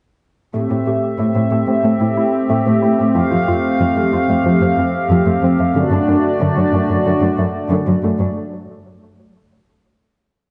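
Brooding and vast, this cinematic excerpt moves at a steady 92 BPM in 4/4 with a straight feel, tuned to A4 = 442 Hz. Up front, a hollow, flute-like soft pad holds sustained chords through a chorus, moving from Am7 to Fadd9 and then D/F#. Beneath it, a lush, bowed symphonic cello section carries the bass line with expressive vibrato, sitting prominently in the mix. Further back, a glassy, crystalline wavetable pluck traces arpeggios with a fast attack and decaying tail, its digital edge shaped by chorus and delay. All three parts enter at 0.5 seconds, and the pad is the last to stop at 8.4 seconds, opening a break that runs to 10.5 seconds. A moderate scoring-stage reverb of 1.6 seconds surrounds the parts, and the top end is rolled off above 10.3 kHz.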